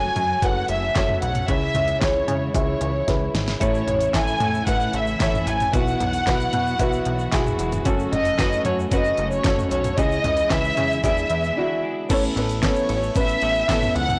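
Piano-driven pop at 113 BPM in 4/4 with a hopeful, warm mood, cut from a longer piece and moving through F#m, C#m, A and Bsus4 before an E7 lands on Aadd9 at 12.1 seconds. A dark, lush violin section carries the melody up front with vibrato and tape echo, over a woody, slightly detuned upright piano, a very quiet bowed string section holding sustained chords, and a punchy, funky analog synth bass with a filter pluck and fast attack. A knocking, fat-snared electronic drum kit with crisp hats and handclaps enters at 0.2 seconds and fills just before a twangy twelve-string electric guitar riff with spring reverb and a grainy egg shaker join at 3.6 seconds, all in a blown-out, overdriven recording with light small-room ambience.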